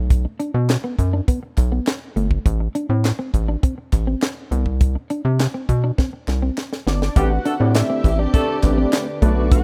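This excerpt of early-eighties boogie funk rides a straight 4/4 groove, with a tight, up-front funk kit of high-tuned snare, tight kick, hi-hat and handclaps locked beside a rubbery, bouncy square bass that plucks with a nasal, hollow edge. The mood is slick and funky, as a clean, compressed electric guitar with analog chorus plays a fingered riff, and a very quiet group handclap adds crisp human texture from the small room. A drum fill from 6.0 s leads into a new section at 7.2 s, where the harmony shifts to Am11 after moving through Bm, Amadd11 and Csus2. There a barky, gritty overdriven tine electric piano with fast tremolo comps through a combo amp, a lush, woody string section holds sustained chords with vibrato, and a distant, punchy horn section adds a brief second line. Just before, at 6.9 s, a fat detuned sawtooth lead with a sub octave, chorus and phaser enters carrying the melody up high. 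The whole has the small-room ambience of a rough home demo mix.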